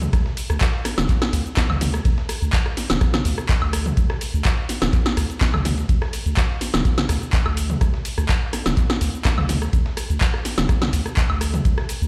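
Acid house at 125 BPM in a straight 4/4, this trippy, raw cut from a longer piece runs about 12 seconds on a single section. A dry, deep electronic kick sits up front, tape-warm and analog, driving the groove from 0.1 s to 11.8 s. Beside it, a punchy analog drum machine plays throughout with cabasa, handclaps, hi-hat, rim click, snare, toms and woodblock, overdriven and re-recorded in a large room, with a short room on the snare, clap and hats. A round sine sub bass, ranging from D1 to D2 with a fast attack and sustained notes, pumps under sidechain compression. Far beneath, a gritty, compressed sampler-style kit adds a very quiet ride cymbal and medium-tuned snare. The whole mix carries a light stone-room reverb, as if played on a big sound system in a bare room.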